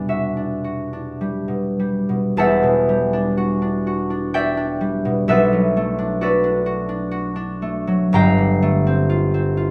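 A bright, ringing concert harp plays alone in this brief classical excerpt, its fingerpicked lines spanning E1 to Bb5 in a wistful, mysterious mood with a free, rubato sway in three. The harp sits up front, while a moderate stone-room reverb lends a sense of hearing it from further back in the space. A short opening passage gives way at 2.4 seconds to a new section, as the harmony drifts from Em9 to Bm7 at 5.3 seconds and moves to Gm11 at 8.1 seconds.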